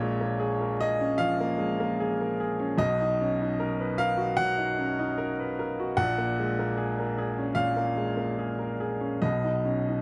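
Wistful and melancholic, this short passage of neoclassical minimalist piano drifts along with a loose, rubato feel over a 4/4 metre. A solo baby grand carries the whole 10 seconds, its clear, natural tone spanning from Bb1 up to F#5 and ringing with long sustain. The piano sits up front and intimate in a dry, close studio sound with a 1970s character, where the audible action noise of the instrument becomes part of the texture. The harmony moves from Bbm7 to Bmaj7 at 2.8 seconds, settles on Gbadd9/Bb at 6.0 seconds, and closes on a rootless Abm/Cb at 9.2 seconds. Cut from a longer piece, it feels like a private, reflective moment caught mid-thought.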